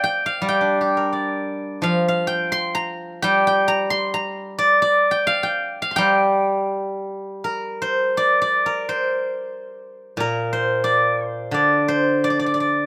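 The rhythm is free and rubato over a loose 2/4, with the pulse drifting between 81 and 92 BPM. This short piece of Chinese traditional music, cut from a longer work, features a solo steel-string zither in the G yu mode, tuned to A4 = 439 Hz. Played with fingerpicks, the acoustic zither has a silvery, ringing tone and sits up front, ranging from Bb2 to C6. The mood is contemplative and full of longing, moving from an opening section into a second one at 7.4 seconds before the clip ends at 12.9 seconds. The sound is dry and close, with the unpolished feel of a rough home demo.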